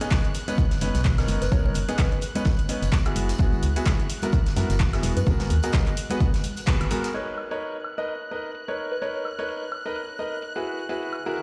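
Euphoric, feel-good piano house at 128 BPM in B major, with a brilliant baby grand piano riff trailing dub echo over lush, low-pass-filtered symphonic strings, both pumping with sidechain, while a punchy overdriven analog drum machine runs throughout and an up-front electronic kick, background tambourine and congas and a tight metal drum kit with a rolled-off top drop away by 7.1 s, a hollow, organ-like FM bass sits beneath, a round, warbling synth lead with chorus and tremolo drifts in the background, and a faint riser enters at 11.0 s, the mix set in a stone room reverb.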